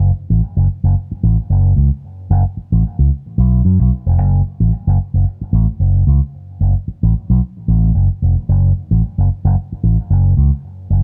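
Driving and hypnotic, this funk passage features a fingered electric bass with an envelope filter playing alone and up front for the full 11.0 seconds, its bright, amped tone sitting low in the register with a light swing on the sixteenths. The dry, close sound of a 1970s-style studio keeps the bass immediate, with only a touch of light reverb around it, in a short cut from a longer piece.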